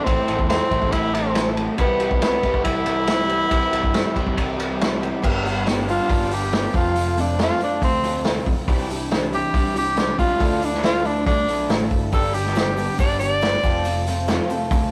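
Dusty and wistful, this folk rock and heartland rock passage moves in a straight 4/4, cut from a longer piece and heard through a rough rehearsal-room recording with warm saturation and a moderate stone-room reverb. A clear tenor saxophone carries the melody up front with light vibrato and a smooth top, turning into a solo at 5.2 seconds as the harmony shifts from Am and Cmaj7 toward G, F, Cadd9 and Dmadd9. Behind it, a picked twelve-string acoustic guitar with old strings gives a woody, boxy, octave-doubled shimmer, while a double-tracked, overdriven electric guitar plays a compressed riff in the background. A very quiet, muted string section bowed con sordino holds veiled sustained chords, and a picked electric bass, direct and amped, anchors the low end. The vintage drum kit sits up front with a punchy kick, medium-tuned snare and dark, rolled-off cymbals, and a grainy, band-limited tube shaker slips in very quietly at 12.1 seconds.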